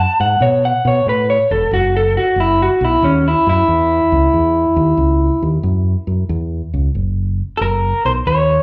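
A slightly broken-up, lo-fi electric guitar through a small old amp, compressed and up front with slapback echo and digital delay, opens with a clean solo over a round, dark, direct fingered electric bass in this gritty, rollicking electric blues shuffle, a live club fragment heard through the venue's PA with moderate reverb, the solo running until 7.0 seconds before a brief closing passage over F#.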